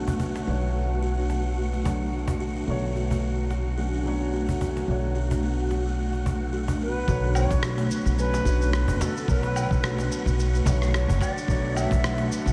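Soaked in a huge, dreamy reverb, this meditative, mystical organic downtempo excerpt sets a woody pizzicato upright bass up front beneath a thick-felt muted upright piano, a buzzing kalimba playing arpeggios, a blurred granular cloud pad, a breathy wind-like tuned noise texture and a snappy cajon in the background, with a distant, airy Native American-style cedar flute carrying the melody from 6.5 s and a gritty, thumpy electronic kick arriving together with a tape-warm electronic shaker, woodblock and rim click at 7.1 s.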